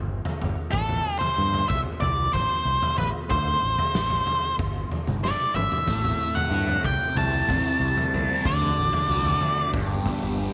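Psychedelic rock in A dorian at 93 BPM, dark and hypnotic, where a growling overdriven fingered bass and a raw, punchy garage drum kit with a gritty stone-room sound carry an up-front octave-fuzz lead guitar with tape echo over Am, D5 and G5, until a drum fill at 5.2 seconds brings in a double-tracked phased fuzz riff guitar and a warbling, mellow organ-string pad in the background at 5.9 seconds, moving through Am, D7 and G in this short cut from a longer piece.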